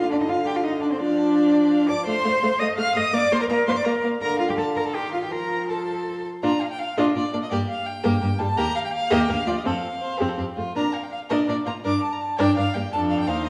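A quick classical-period string quartet movement in Bb major, lively and spirited, moving at 167 BPM in 3/4 with a straight feel, in a short passage cut from a longer piece. The first violin carries the melody with a clear, somewhat distant tone, while the second violin's line sits nearer. The viola's smooth, even accompaniment and the rich, focused cello bass are both placed up front, and all four players bow with vibrato. A moderate scoring-stage reverb lends the quartet a sense of space as the harmony opens on D minor, moves through Bb, G minor and F, and turns to a new section at 6.4 s.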